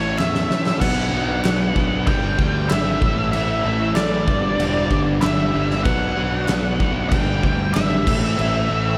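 Classic rock at 95 BPM in a straight 4/4, this confident, sunny excerpt is led by an up-front octave-fuzz lead guitar with distortion and slapback echo, riding over a growly, overdriven fingered bass and a big drum kit with a fat snare and punchy kick that opens with a fill from 0.2 to 0.8 seconds. Underneath sit very quiet layers: a biting overdriven guitar and a sludgy distorted guitar playing riffs, a picked steel-string acoustic, a mellow grand piano with audible action noise entering at 0.8 seconds, hollow group handclaps, and a barely audible tonewheel organ on slow rotary holding sustained chords. The harmony moves through A, Bm and G in a big arena sound with concert hall reverb.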